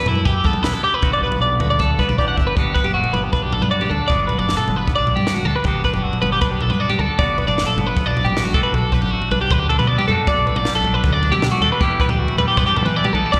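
Playful and intricate, this math rock and midwest emo excerpt is led by bright, compressed twelve-string electric guitar arpeggios sitting up front with spring reverb and slapback echo, while a clean, twangy electric guitar adds picked accompaniment with its own slapback echo. A growling, overdriven fingered bass gives punch underneath, and a dry compact cocktail kit with a high-tuned snare and firm kick plays a drum fill from 2.2 to 2.6 seconds that leads into the longer second section. The chords move from B7sus4 and Gmaj7 to Bm7 and Em7, and the whole band sounds like a live gig heard through the venue's PA in a recital hall's reverb.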